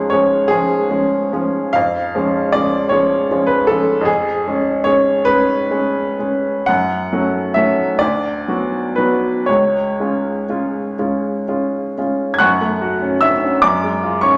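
Brooding and bittersweet, this brief cut from a longer romantic character piece for solo piano sways in a rubato 6/8, its woody, intimate upright sitting up front with audible action noise inside a wet recital-hall reverb, spanning C#2 to G#6 before moving into a new section at 12.4 seconds.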